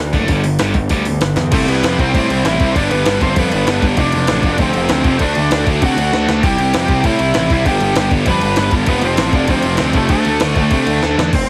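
Two overdriven rhythm guitars, one crunchy and bright, the other sludgy and dark, open this energetic, rebellious punk rock cut at 196 BPM in G mixolydian, joined by a punchy fuzz bass up front and a gritty, pitched-up sampler-style drum kit with a thumpy kick and high-tuned snare. At 1.5 seconds a bluesy, distorted lead guitar takes the melody over a C, G, F, D progression, while a very quiet double-tracked distorted guitar adds a tight third riff underneath. Drum fills mark 6.1 seconds and the close, and the whole mix carries light reverb and a heavily compressed, radio-style sound.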